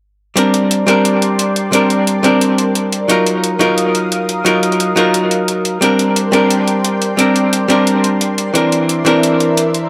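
An echo-heavy mix sits in a moderate plate reverb, with a faint mains hum under the music in this short cut from a longer liquid drum and bass piece. At 176 BPM in 4/4, with a light swing on the sixteenths, the mood is uplifting and lush, set in Bb major. Up front from 0.4 seconds, a clean, picked hollow-body archtop guitar, miked and amplified, carries the accompaniment with a dark tone, its notes trailing into dub echo. A thick, detuned unison pad of sawtooth and square waves joins at 0.8 seconds with a slow attack, holding bright sustained chords treated with chorus and phaser. An electronic hi-hat, sampler-style, compressed and pitched up, adds a gritty, tape-warm texture that sounds re-recorded in a small room. The harmony moves from Bb69 to Ebmadd9, back to Bb69, and lands on C9 at 8.6 seconds.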